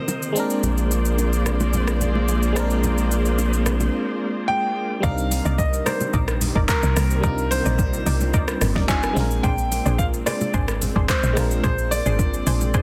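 A woody, punchy log drum bass takes over at 5.0 seconds, when the drop lands after a short break, replacing the thick, saturated sub bass that holds the opening from 0.6 to 3.9 seconds in this deep, hypnotic amapiano cut in C minor at 109 BPM. Around them, a barking FM electric piano with chorus and tremolo, distant lush strings with sidechain pumping, and an overdriven, up-front R&B drum kit of soft kick, fat snare, metallic hats, handclaps, rim clicks and shaker run throughout, while very quiet, ringing bongos and congas sit close and dry. A clear, intimate grand piano with audible action noise and tape echo carries the melody from 4.5 seconds, joined by bright sawtooth chord stabs through the drop, all moving between Bb9 and Cm9 chords in a dense, heavily limited modern master.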